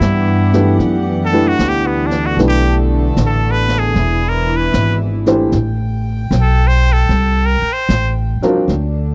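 A slow swung 4/4 pulse, carried by brushes on the snare and hi-hat of an acoustic jazz kit, sets up this tender, romantic ballad fragment cut from a longer piece. Out front, a trumpet with a straight mute sings the melody as a jazz-style solo, its tone brilliant yet nasal, with vibrato and a smooth top, before falling silent at 8.1 seconds. An upright bass sits close and prominent, plucked on steel strings with a woody, dark, thumpy sound. From 0.5 seconds, a warm upright piano adds polished, present accompaniment with a short sustain. Behind them, a distant chamber string section holds bowed chords with a soft attack and a pure, floating quality. The recording has the dry, close feel of a 1970s-style studio, set in a small room ambience, while the harmony moves through Em9, A9sus4, E7 and Am9.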